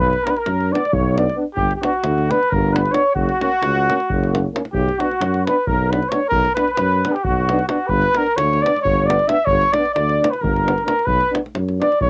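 In a straight 7/8, this fiery, virtuosic Balkan brass band fragment puts a smooth-topped trumpet with light vibrato up front on the melody, a clear, soft-attacked flugelhorn on a second line in the background, and a mellow, tube-saturated tuba on bass beneath a deep, close davul, while a distant euphonium and a dark French horn join at 0.3 seconds as accompaniment over Bm, G and F# chords, the trumpet, flugelhorn, euphonium and horn carrying a cassette-tape haze in a small booth-like home recording.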